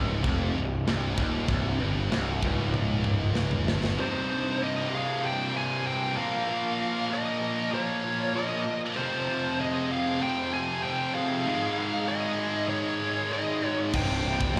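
Aggressive and heavy, this heavy metal excerpt at 96 BPM in straight 4/4 opens with three bright, distorted rhythm guitars churning riffs, two of them set back with slapback echo, one compressed and one double-tracked, over a growly, fuzzed bass up front and a tight, mid-forward drum kit of kick, snare, toms, crash and china, which ends the opening with a fill at 2.7 seconds. At 4.0 seconds the music settles into C minor as bass and drums drop out and a dark, high-gain lead guitar carries the melody with slapback and tape echo, shadowed by a fainter second lead line, moving through Bb minor, F, Ab and back to C. Bass and drums return at 13.9 seconds, and the whole piece sounds like a live gig heard through a venue's PA, with small-room ambience and recital-hall reverb.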